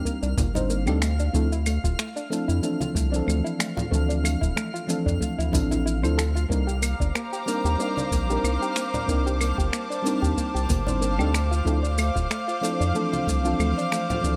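Sunset chillout at 93 BPM in 4/4, with a light sixteenth-note swing that keeps the relaxed, smooth mood gently rolling through this short section. A mellow FM electric piano carries the accompaniment with a soft, chorused and phased tone and a touch of tape echo, while a soft round pluck spins arpeggios alongside it, its nasal, cassette-tinged timbre sitting further back. Underneath, a round analog bass warmed by tube saturation sits up front, and a twinkling granular texture sparkles high above with its own reverb. The rhythm section blends an overdriven electronic kick with a dark, small-room brush kit of claves, finger snaps, hi-hat and shaker, plus bright, low-tuned congas from 0.4 seconds. At 6.8 seconds an airy, breathy pad with a warbling vintage character enters on sustained chords, thickening the harmony as it moves between Cm9 and Dm9 under a light reverb.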